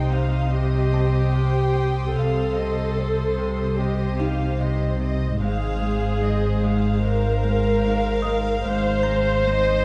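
A hushed bed of bowed chamber strings opens this uneasy, mysterious suspense cue from a film score, moving at 74 BPM in a straight 4/4. The viola section sits up front with a soft, sul tasto tone and light vibrato, while the cello and a dark, smooth-topped double bass section anchor the low end alongside a deep, sustained sub bass drone. Violin sections carry a faint melody and a second line above, with a high violin texture hovering until about 5.0 seconds. A ringing, fingerpicked Celtic harp repeats a riff in the background, and a tinkling music box drifts in at 0.9 seconds with a delicate, small-box sparkle. The harmony rests on C minor before shifting to G#add9 at 5.4 seconds, all wrapped in a moderate scoring-stage reverb that gives this dark, intimate cut from a longer piece its close, brooding atmosphere.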